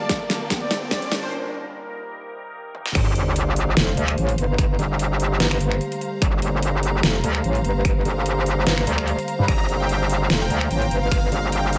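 Two saturated, metallic FM wobble basses with chorus and overdrive lead this aggressive, menacing heavy wobble dubstep fragment in G minor at 147 BPM, crashing in at the drop at 3.0 and 3.8 seconds after a build-up of riser and sub drop effects and a filter-swept, soft, full-bodied supersaw melody that returns at 9.5 seconds, while a warbling wavetable pad and a lush studio string section pump in the background beneath a punchy overdriven kick and an up-front dubstep kit of deep snare, hi-hat, finger snaps, toms and crash in a lightly swung half-time groove.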